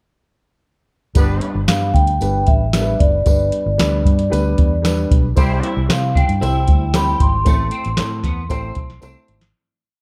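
Warm and uplifting, this short, uptempo 1960s-style soul piece in G major moves at 114 BPM. A soft vintage rhythm box with a deep kick, crisp snare and metallic hats drives a backbeat soul groove up front, joined by a round, foam-muted fingered bass playing a syncopated line with chromatic approach notes, a dark baby grand piano playing quarter-note chords with grace notes, and a jingly tambourine on every beat in the background. A ringing vibraphone with soft mallets carries a motif-based melody of call phrases from 1.7 seconds, while a mellow horn section adds short, tight stabs with tape echo and a clean picked electric guitar with ensemble chorus repeats a riff from 5.4 seconds, before the piece fades out and closes on a drum fill at 9.0 seconds.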